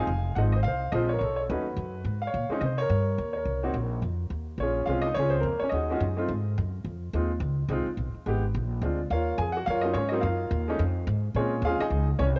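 A swung 4/4 feel carries this late-night, moody jazz piano trio excerpt of 12.4 seconds, with a warm, woody upright piano carrying the melody and a plucked, woody upright bass on steel strings holding down the low end throughout. Both sit up front in a home cassette recording, bathed in moderate spring reverb, while the minor-key harmony drifts through extended chords and shifts into a new section at 4.6 seconds.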